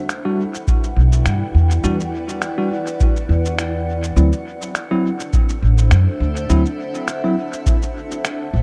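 Deep and hazy, this short ambient dub excerpt moves at 103 BPM in 4/4 with a light 16th-note swing, sitting in E minor as an Em7 chord gives way to D7 at 4.2 seconds. A blurred, evolving granular pad holds sustained chords from the start, joined by muffled, pitched-down finger snaps and shaker treated with dub echo, bright bell-like electric piano stabs that also trail echoes, and a dry, deep analog kick drum placed up front from 0.7 seconds. A woody, thumpy pizzicato upright bass enters at 1.0 seconds and anchors the low end prominently, all within a dark production with light reverb.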